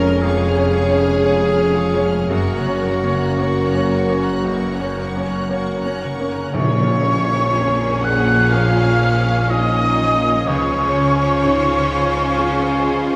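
Heard from further back in a reverberant scoring stage, this excerpt of an emotional, longing film score moves slowly and freely at around 54-63 BPM in 4/4, with lush, vibrato-rich violin sections carrying the melody and a distant, clear second violin line, a solo clarinet and rich violas and cellos beneath. Mellow French horns hold soft-edged chords while a bright baby grand piano and a ringing, thumb-plucked concert harp supply accompaniment and arpeggios over the double basses. At 6.5 s the music turns to Bb minor with an ensemble accent, as a pure silver flute enters high above, round soft-mallet timpani sound briefly and a very quiet tam-tam shimmers until 10.4 s.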